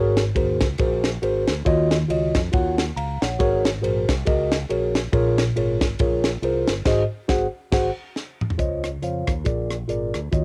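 Uptempo gospel at 138 BPM in 4/4 with a swung eighth-note feel, this short section cut from a longer piece sounds soulful and hopeful. A mellow, clean tine electric piano sits up front, carrying the accompaniment across a broad range over chords such as Ab9sus4, Ebm9 and Bbm7. Underneath, a bright, punchy fingered electric bass holds the low end from the start, while a tight funk drum kit enters at 0.2 seconds with an airy, polished character, a high-tuned snare and a tight kick, its sound colored by cassette tape. The band hits accents together from 6.9 seconds, and a drum fill at 8.2 seconds leads into a new section at 8.6 seconds that moves through Dbmaj9 to Bb7. The whole performance carries the character of a home recording on cassette in a studio ambience.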